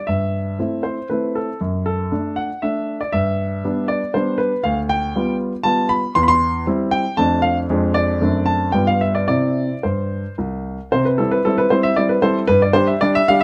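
Graceful and cheerful, this short excerpt from a classical-period piano sonatina in 3/4 unfolds with a gentle rubato on a single clear grand piano spanning C2 to C6, its intimate, up-front sound captured by close, detailed microphones that reveal audible action noise within light reverb, as the harmony moves from G major into C major at 4.6 seconds and a new section begins at 10.9 seconds.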